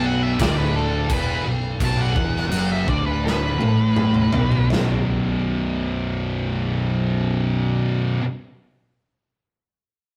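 Stoner and doom metal at 82 BPM in B minor, this ominous, brooding excerpt is cut from a longer piece and moves in a straight 4/4. An octave-fuzz lead guitar with a dark, distorted tone takes a solo from the start, reaching from A4 to A5 while the tempo slows down, and it stops at 4.7 seconds. Three thick fuzz guitars sit in the background playing a riff from B1 to A3, one of them dark and the others warm, with one double-tracked. A picked electric bass with a round, amped overdrive tone holds the low end beneath them, running to 7.8 seconds. The big rock drum kit sits up front with bright cymbals, a boomy kick, a medium-tuned snare and toms in a big room, playing a fill from 3.2 to 4.7 seconds before the harmony shifts from Bm to B5 as the guitars ring on. Light reverb and the rough rehearsal-room recording lend the whole a warm, saturated character.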